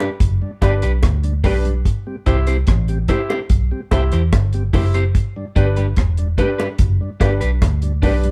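A straight 4/4 roots reggae groove at 73 BPM, laid-back and serious, rests on a deep, dry drum kit of kick, hi-hat and rim click alongside a round, foam-muted vintage bass that sits up front, both entering at 0.2 s. Tight, high-tuned bongos, a dark, slightly broken-up picked electric guitar with spring reverb, and a smooth tonewheel organ with key click and slow rotary speaker in the background play from the start, while a woody upright piano with audible action noise adds stabs from 0.6 s. The chords move from G to C and back to G in this excerpt of a longer piece, played by a band live in one room with light reverb.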